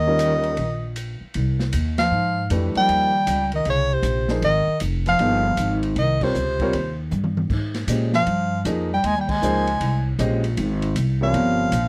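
Modal jazz at a brisk 156 BPM in 4/4 with a swung eighth-note feel, this short excerpt in Ab major has a hypnotic, searching mood, moving from an Eb7 opening to a sustained Abmaj9 from 1.4 seconds onward. A soprano saxophone carries the melody up front, its subtone voice colored by light vibrato and scooped notes, while a bass clarinet plays a second line that sits distant and roomy, with its own vibrato and scoops. Pizzicato upright bass with gut strings gives a woody, thumpy low end, and a grand piano accompanies with an intimate, natural sound in which the action noise is audible. An acoustic drum kit in a small room adds dark cymbals, a medium-tuned snare and a boomy kick, with a brief fill between 7.1 and 7.5 seconds. The band hits accents together at 1.9, 6.2 and 9.2 seconds, all captured in a dry, close 1970s-style studio sound with light reverb.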